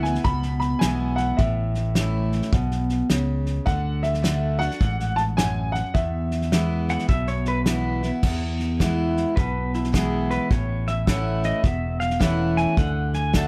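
An easygoing, sunny stretch of honky-tonk and classic country opens at 105 BPM in a swung 4/4, with a woody, slightly detuned upright piano carrying the melody high over a bright, full-bodied picked acoustic guitar, a fingered electric bass and a natural country drum kit. The guitar, bass and drums sit up front, with the drums giving a punchy kick, a fat snare, hi-hat and crash cymbal in a small-room sound. The harmony moves among E, A and D in E mixolydian. The vintage piano, smooth and long in sustain, drops out at 7.6 seconds, just after a clean, compressed pedal steel guitar slides in at 6.9 seconds with fingerpicked notes and volume swells. From 8.2 seconds the pedal steel takes a solo over the rhythm section until the cut ends, all in a dark, warm production with little reverb.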